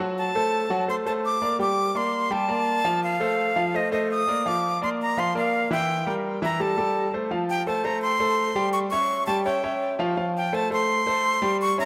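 A Latin cut with a driving, danceable feel, this short excerpt opens on a clear concert grand piano accompanying from the start, its deep bass and audible action noise sitting up front. A breathy, bright flute joins at 0.2 seconds to carry the melody, its crisp chiff, vibrato and reedy edge trailed by tape echo. The dreamy mix is soaked in a long plate reverb, and the harmony shifts into a new section at 7.3 seconds.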